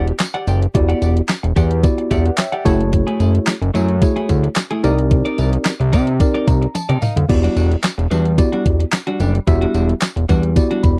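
Slick and funky, this early-eighties boogie funk excerpt moves at 110 BPM in a straight 4/4 over Em9, F#m9 and Cm9 chords, with a fat, nasal analog bass and a crisp, overdriven 8-bit drum machine up front, a mellow, slightly out-of-tune tine electric piano adding fills near 1.8, 6.2 and 10.6 seconds, a clean picked electric guitar riff bathed in lush chorus, a jingly tambourine in the background, and a drum fill at 6.7 seconds, all captured in a dry, close 1970s-style studio sound.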